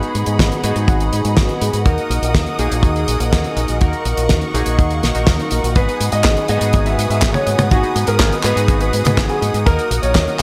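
Danceable and nostalgic, this italo disco excerpt in G# minor moves at 123 BPM as lush, bright studio strings sustain G#m7 and D#m chords over glossy chorused polysynth stabs with tape echo, a round, dark fingered bass with an envelope filter, a tight dry kick, and a damped 70s kit whose fat snare, handclaps, hi-hat and toms carry gated reverb, while a mellow concert grand piano enters at 5.8 seconds with a melody trailed by digital delay.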